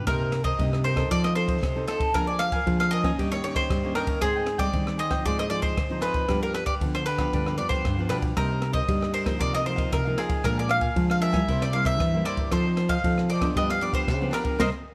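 Samba and choro in C minor at 116 BPM, a yearning, nostalgic fragment cut from a longer piece, led up front by a woody, double-strung mandolin bathed in plate reverb. A crisp cavaquinho and a bright, fingerpicked nylon-string guitar with audible finger squeak fill out the harmony. A second, thumb-plucked nylon-string guitar carries a deep, full-bodied bass line, while a smooth small-room drum kit with a boomy kick, dark ride cymbal, rim click and snare keeps time, with the band hitting a closing accent at 14.6 seconds.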